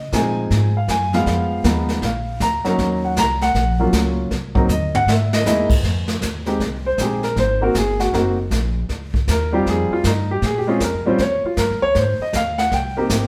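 A live, moderately reverberant stone-room sound frames this moody, smoky jazz piano trio, cut from a longer piece, swinging in 4/4 at 157 BPM: a warm, natural baby grand carries the melody up front over woody pizzicato upright bass and a close brushed kit with dark cymbals and a boomy kick, until a drum fill at 4.7 seconds leads into a piano solo in F minor from 5.8 seconds over rich chords such as Fm9 and Abmaj9.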